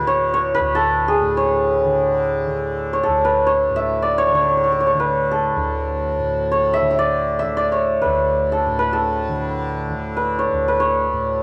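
Hindustani classical music in free time, this short excerpt from a longer piece sets raga yaman on D with a devotional, meditative calm, tuned slightly below standard pitch at A4 = 437 Hz. A hammered santur carries the melody up front across the full 11.4 seconds, its mellow, ringing tone moving between F#4 and E5. Beneath it, a softly plucked tanpura holds a buzzing drone from D2 to D3, sitting lower in the balance with a warm, shimmering resonance. The santur also has a shimmering quality. The sound is dry and close, like a 1970s-style studio recording, with only light, small-room reverb around the instruments.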